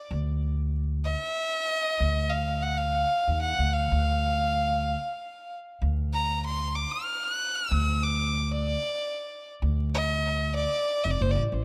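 Arabic maqam ensemble music in D maqam saba, stately and festive at 95 BPM in 3/4, cut from a longer piece, with a single bright, close violin carrying the melody up front with light vibrato, an airy bow and tape echo, over a woody pizzicato upright bass, all set in a moderate spring reverb with a layer of vinyl crackle.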